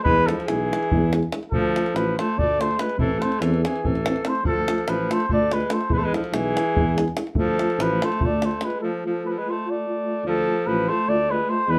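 Balkan folk played by a brass band, this short cut from a longer piece moves at a brisk 289 BPM in eighths over a straight 7/8, in D dorian with a raised fourth, and carries a virtuosic yet bittersweet mood. Up front, a trumpet with a bucket mute carries the melody in a veiled, distant voice, while a clear alto saxophone with vibrato and a smooth top traces a second line below it. A punchy French horn sits in the background, a very quiet euphonium adds soft vibrato, and a tuba with light vibrato anchors the bass with a punchy, rounded tone. A tight, close and dry davul drives the percussion until 8.8 seconds, when a break opens before the opening material returns at 10.2 seconds. The harmony cycles through E, D minor and A minor, and the studio reverb gives the band a roomy, wet setting.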